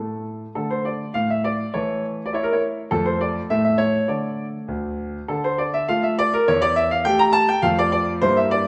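A classical-period piano sonatina in D minor, this short excerpt cut from a longer piece moves at 102 BPM in a straight 2/4, its mood restless and dramatic. A clear concert grand piano plays solo throughout its 8.7 seconds, spanning D2 to Bb5, with a deep bass and an open, up-front presence. The harmony circles D minor, touching on A over E and D minor over F, with brief chordless moments before the D chords return. A new section begins at 5.3 seconds, restating D minor, A over E and D minor over F in turn. A wet recital hall reverb with a 1.5-second decay surrounds the instrument, giving it a resonant concert setting.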